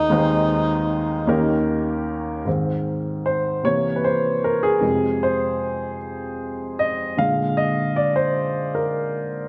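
A slow, straight 6/8 pulse at 51 BPM in dotted quarters carries this reverent, soulful gospel fragment in Ab major. A breathy tenor saxophone sits up front for only the first 1.6 seconds, its subtone voice shaped by light vibrato and scooped notes over Ab/Eb and Eb7. A woody upright piano with long sustain plays from the start and takes a solo from 2.5 seconds through Ab, C7, Fm and Bb7, all set in a dark, warm production with moderate scoring-stage reverb.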